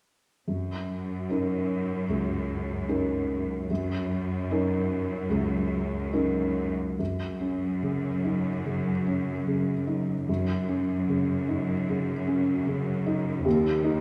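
Moving and tender, this cinematic, emotional film score cue unfolds at 74 BPM in 4/4 with a rubato feel, set in F# major and cut from a longer piece. A felt-muted upright piano carries the accompaniment from 0.5 to 14.0 seconds, its thick-felt tone soft, mellow and intimate, sitting up front in the mix. Alongside it, a studio cello section holds the bass line over the same span, bowed with vibrato and sounding bright, focused and lush as an ensemble. The harmony rests on F#6 before moving to F#5 at 7.0 seconds, where the music shifts into a new section, and the chords fall away near the close. A moderate scoring-stage reverb gives the whole a sense of a church or concert hall around the two parts.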